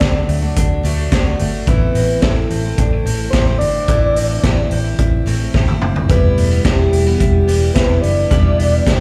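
Jangly indie pop at 108 BPM in a straight 4/4, this short cut from a longer piece feels restless and wistful, sitting in A dorian as the chords move from D to Am at 1.7 seconds and on to Em at 6.1 seconds. A soft, octave-layered synth lead carries the melody with a round, warbling vintage tone, its chorus, vibrato and slapback echo giving it a gently wobbling character over a sub-octave body. Beneath it, an electric guitar through a small old amp plays twangy, slightly broken-up arpeggios with slapback echo and digital delay, while a bright, jumbo-bodied steel-string acoustic guitar plays picked accompaniment further back. A dark, foam-muted fingered electric bass gives a rounded low end, and a raw garage drum kit sits up front with a boomy kick, a high-tuned snare and a gritty, saturated sound with a rolled-off top, breaking into a fill around 5.5 seconds. The whole band comes across as a live gig heard through the venue's PA, wrapped in light club reverb.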